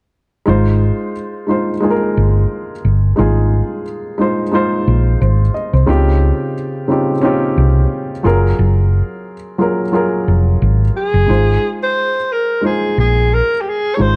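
A gently swung sixteenth-note feel in 4/4 carries this short cut from a longer lush, 1970s-style soul piece, its mood warm and lush. From 0.5 seconds a hollow-body short-scale electric bass sits up front with a round, punchy, amped tone, alongside a dark baby grand piano whose mellow, intimate comping keeps a short sustain and lets its natural action noise be heard. The harmony moves from Ab6 through Dbmaj9#11 and Gbmaj9 before returning to Ab6. At 11.0 seconds a breathy alto saxophone enters with a jazz-style solo line, colored by vibrato and scooped notes and carrying a roomy, distant character. Light reverb and a small-room ambience give the dark production a close, cosy feel until everything stops at 14.2 seconds.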